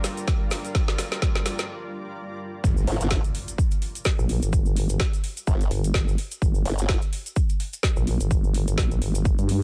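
This swaggering, bouncy bass house excerpt in G minor at 127 BPM opens on a dark, moody analog pad holding a G minor chord, joined by a cloudy, evolving granular pad with its own reverb, both pumping against the kick. A garage drum kit with a woody snare and metallic hats plays a fill over a grainy, bright cabasa, while a punchy, overdriven electronic kick sits up front in the mix. At 1.7 seconds the fill gives way to a short break, and the granular texture ends. The drop lands at 2.6 seconds with a background impact and a nasal, resonant vowel-sweep wobble bass, saturated and chorused, carrying the low end. At 2.9 seconds a detuned pulse-wave formant-sweep wobble bass joins it, and the swung sixteenth-note groove drives on through a digital ambience.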